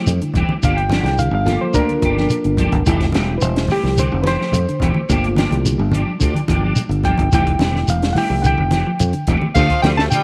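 Hypnotic and funky, this 108 BPM afrobeat excerpt in G dorian rides a reedy, tremolo-laced electric piano solo over Fmaj9 and Gm7 chords, backed by dark background guitar arpeggios, clean chorused guitar stabs, a bright, growly fingered bass up front, a dry cocktail kit with a punchy kick and high-tuned snare, damped low congas and a grainy shekere, until a breathy soprano saxophone and a raspy tenor saxophone enter at 9.5 and 9.6 seconds in a small, lightly reverberant room.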